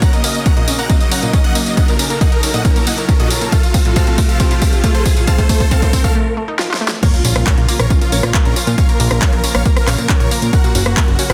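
A straight 4/4 pulse drives this soaring, bittersweet slice of uplifting trance, cut from a longer piece, where a punchy, overdriven electronic kick sits up front beneath a layered big-room dance kit of huge snare, handclaps, rim clicks, hi-hats, tambourine and crash cymbal, with its hats, snare, percussion and cymbals high-pass filtered. The first 7.0 seconds are a build-up full of drum fills, with a riser hovering in the background until a short break at 6.2 seconds, before the drop lands with an impact at 7.0 seconds. Across the whole passage a huge, euphoric supersaw lead carries the melody, detuned and airy with a dub echo and sidechain pumping, while a warbling, vintage unison pad holds sustained chords under chorus in the background. A lush unison pluck spins arpeggios behind them, roughened by 12-bit sampler grit and tape echo and pumping with the kick. Just after the drop a fat, nasal analog bass enters, saturated and evolving, as the chords move from Bbm to Gb in a dense, heavily limited modern master with light digital ambience.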